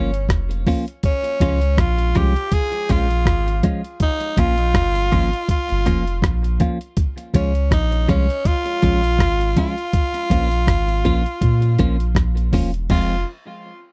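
A dry, close 1970s-style studio sound frames this hypnotic, laid-back roots reggae excerpt, where a raspy, edgy tenor saxophone with vibrato and tape echo carries the melody up front over a clean, fingered electric guitar treated with phaser and tape echo, a deep, round dub sub bass, and a dusty, gritty sampler-style drum kit with a thumpy kick, hi-hat, rim click and crash cymbal, as the chords move between Bbm and Db before landing on Fm at 12.9 seconds.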